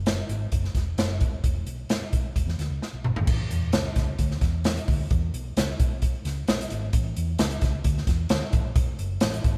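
An up-front, airy acoustic drum kit with a punchy kick, medium-tuned snare, hi-hat, crash cymbal and toms drives this danceable, uplifting 1960s-style soul excerpt at 131 BPM over a dark, round, foam-muted fingered electric bass, with a drum fill at 2.8 seconds leading from E major into E mixolydian at 3.3 seconds, played live in one room with light reverb.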